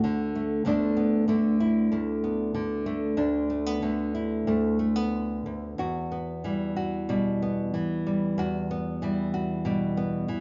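A full-bodied, fingerpicked nylon-string guitar plays alone up front in this short, warm and pastoral folk passage at a rubato 94 BPM in 4/4, its classical voice spanning D2 to F#4 as it moves from D through Bm7/D to an Emadd9 at 5.8 s, wrapped in a wet, large studio reverb with a soft, rounded top end.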